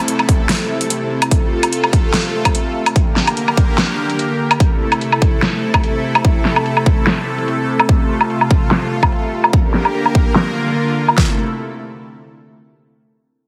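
A lush, detuned supersaw pad opens this aggressive, chaotic cut from a heavy wobble dubstep track, its bright sawtooth chords pumping under sidechain and phaser while a very quiet downlifter sounds during the first 1.3 seconds. Two overdriven, up-front electronic drum layers drive the swung half-time groove: one carries metallic hi-hats, a snare and woodblock, all low-pass filtered; the other pairs a punchy kick with an enormous snare, and a filter sweep runs across the drums until 11.2 seconds. The pad cycles through Am, F, Gm and Bb until 11.4 seconds, set in a moderate lush hall reverb with a heavily compressed, radio-like sound.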